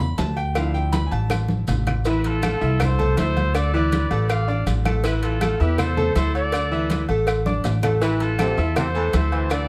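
A woody, thumpy upright bass sits up front in this passionate, driving salsa excerpt in A minor at 161 BPM, its dark gut-string pizzicato anchoring the groove from the first beat. A brilliant grand piano takes a solo over the first 2.1 seconds, moving through Asus2 and Dm(add9), while a drum fill leads into the next section. Congas, grainy maracas, a round low-tuned cowbell, ringing metal-shell timbales with agogo bells, and woody claves fill the background, the congas and cowbell carrying a compressed, saturated edge. At 2.1 seconds a clear, tight horn section with light vibrato and plate reverb takes the melody over Am and Dm(add9), its vintage pop-style sound riding above the rhythm. A second drum fill sets up a punchy, loosely played trombone section that enters in the background at 8.0 seconds with a low second line, all within a moderate studio reverb.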